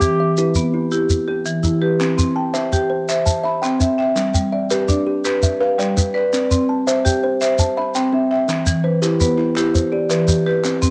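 In 12/8 at 111 BPM, counted in dotted quarters with a straight feel, this southern African traditional piece spins an mbira-style interlocking cycle in C major, tuned to A4 = 439 Hz. Its mood is hypnotic and rippling. A breathy cedar flute in the Native American style sounds a single G4 with vibrato and a soft attack at the very start, then falls silent by 0.5 seconds. Its highs are rolled off and its tone is expressive. Kalimba and marimba carry the arpeggios throughout: the kalimba has a woody, fingertip-plucked board tone that is soft and short, while the marimba sits up front with medium hard mallets. A grainy shekere, close and dry, keeps the percussion going, and a crisp group handclap, distant in a large room, joins at 2.0 seconds. The harmony moves from Em to C, G and C before returning to Em, with light studio reverb and cassette-tape color on the flute, kalimba and marimba, all captured as a home recording cut from a longer piece.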